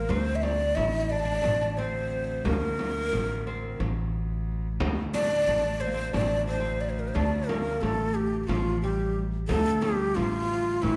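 In a straight 7/8 at 179 eighth-note beats per minute, this longing, melancholic Turkish makam ensemble fragment in D makam ussak, tuned to A4 = 438 Hz, is carried by an up-front ney melody that is breathy and unsteady with vibrato, over a mellow, fretless oud second line, a dark pizzicato upright bass, a floating, very quiet bowed cello drone on D2 and a deep frame drum entering at 0.1 seconds, heard from further back in a wet recital hall.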